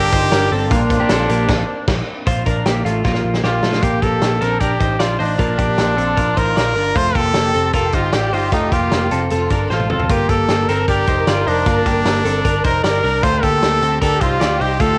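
Heard through the soft haze of a home cassette recording with a moderate spring reverb, this breezy, nostalgic stretch of jangly indie pop moves at 153 BPM in a straight 4/4, in Bb major. A bright trumpet with light vibrato leads up front, carrying the pop-style melody throughout. Behind it, a lush bowed violin section plays an expressive second line in the background, dropping out at 1.5 seconds and returning at 3.8 seconds. A twelve-string electric guitar picks clean, twangy, compressed arpeggios, while a dark, round, foam-muted picked bass anchors the low end and a loose acoustic drum kit with a punchy kick, medium-tuned snare and rolled-off top joins the band accent and plays a couple of fills. At the very start, a very quiet vintage string machine voicing violas holds sustained sawtooth chords with a slow attack, as the harmony passes from Gm7 and Bbadd9 through Bb and F before settling on Dm7.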